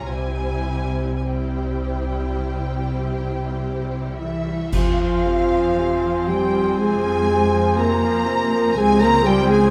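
Closely miked with light reverb, this brief cut from a slow romantic orchestral movement in F minor drifts at 50-62 BPM with rubato, its melancholic, yearning mood carried by lush bowed strings: a distant, rich violin section holds the melody in the background while a second violin line with a focused, smooth top, expressive violas with portamento, a close cello section and woody double basses fill out the harmony beneath. Dark cymbals and concert bass drum, dry and close, sound from the opening until 6.8 seconds, and mellow French horns enter with sustained chords at 4.2 seconds. At 4.7 seconds a full-band accent opens the second section on F minor, bringing in a clear trombone section, an airy flute group and a warm oboe with light vibrato in the background before the harmony settles onto a D-flat major seventh chord.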